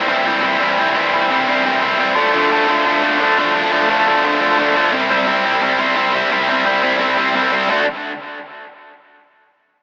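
A tight, bright, double-tracked electric guitar plays alone and up front in this angry, urgent punk fragment in 4/4, its picked, distorted sound carried through chords of C, Dm, C and finally D, with tape echo on the guitar and a short booth ambience giving the rough rehearsal-room recording a small-speaker feel until the guitar stops at 7.8 seconds.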